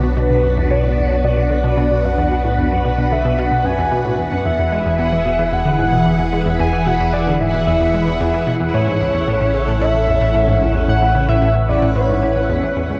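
Ambient, sequencer-driven space music in B dorian at 112 BPM, expansive and mysterious, moving through Bm, E and A in a 13-second excerpt cut from a longer piece. A swirling, up-front phased string machine holds sustained chords over a round, deep analog bass, while a detuned analog pluck riff with tape echo runs in the low register and a shimmering pulse-width lead melody with vibrato rides above, and a bubbling, resonant stepped-filter texture sits quietly in the background. Everything is bathed in a huge ambient reverb and carries the worn, warbling pitch drift of old cassette tape.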